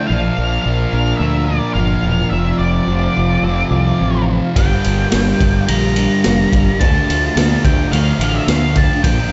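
A dark, warm production with its highest frequencies shaved off and a coat of studio reverb gives this short cut from a longer shoegaze and dream pop piece a wistful, dreamy feel at 107 BPM in a straight 4/4. A thick, dark fuzz guitar and a barely audible overdriven semi-hollow guitar carry the low riff, while a growling, bright, overdriven fingered bass sits up front beneath them. An octave-fuzz lead guitar sings the melody with distortion and slapback echo, and a lo-fi, compressed electric guitar through a small old amp ripples arpeggios in the background, dressed in lush chorus and its own slapback. Behind it all, an ethereal, warbling pad of detuned sawtooth and triangle tones holds sustained chords with slow attacks and long releases, softened by ensemble chorus. A raw, gritty garage drum kit with a boomy kick, medium-tuned snare and ride cymbal enters at 4.6 seconds, saturated and up front, as the harmony cycles through Bb, F, Gm and Dm.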